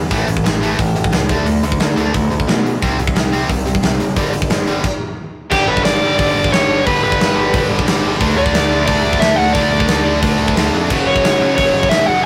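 Punk rock at 178 BPM in a straight 4/4, rebellious and upbeat, cut from a longer piece and captured as a rough rehearsal-room recording with warm saturation and light reverb. A sludgy, double-tracked distorted guitar riff and a growling, overdriven picked bass drive the opening over a tight metal drum kit with bright cymbals, a medium-tuned snare and a tight kick sitting up front in a big room. The chords move through A, D5, C5 and G5 before a full stop at 4.8 seconds. At 5.5 seconds the band crashes back in on G, and a crunchy overdriven guitar melody enters up front, reaching from G4 to F#5. Beneath it, a second tight, distorted double-tracked guitar riff sits in the background as the harmony climbs through D5 to F#5.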